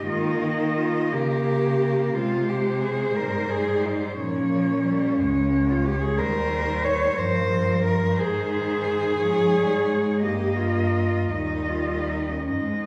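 Lyrical and tender, this short excerpt from a longer classical piece for cello ensemble moves in a slow, rubato 6/8 at around 47-62 BPM, with four bowed cellos playing throughout its 12.9 seconds. A distant, smooth cello sings the high melody with vibrato, while a dark, woody cello sits close and up front on the second line, the loudest voice. Beneath them, a soft-attacked cello shapes the accompaniment with expressive portamento, and a warm cello carries the bass with vibrato and expressive portamento, all bathed in the reverberant glow of a recital hall as the harmony travels from Eb through Bbm and Db/Ab before settling back on Eb.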